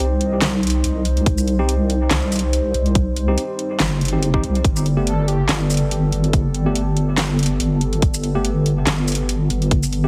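Deep dubstep at 142 BPM in 4/4, riding a half-time feel with a light swing on the sixteenths, this meditative, heavy cut from a longer piece moves from C minor to a Gadd9 chord at 4.6 seconds. A deep, soft wobble bass sits up front with a triangle-and-sine body and chorus, while a dark analog pad built from sawtooth and triangle layers holds sustained chords beneath, its slow attack colored by chorus and phaser. A clean tine electric piano drops stabs that trail off into dub echo, sounding as if heard through built-in speakers. The deep house drum kit brings a fat snare, metallic hi-hats, handclaps and shaker, all pushed through overdrive, and a tight, tape-warm electronic kick joins at 1.3 seconds. Briefly, from 5.1 to 5.6 seconds, a breathy, flute-like synth lead with vibrato surfaces in the background, dressed in analog chorus and dub echo. The whole mix carries light reverb and a heavily compressed, radio-like squeeze.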